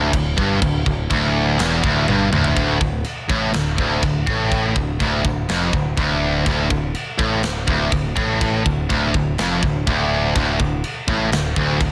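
Heavy metal with a heavy, epic mood, this short cut from a longer piece moves at a straight pulse in four. A bright, overdriven electric guitar sits up front playing a low riff, joined by a sludgy, warm-toned distorted guitar tucked into the background. A growling picked bass, amped and overdriven with a bright edge, holds down the bottom register beneath them. The tight metal drum kit, recorded in a big room with bright cymbals, a medium-tuned snare and a tight kick, sits up front and plays a fill from 2.1 to 2.6 seconds. That fill launches the second section at 2.6 seconds, where the band settles onto a D minor chord under light reverb and a dense, heavily limited modern master.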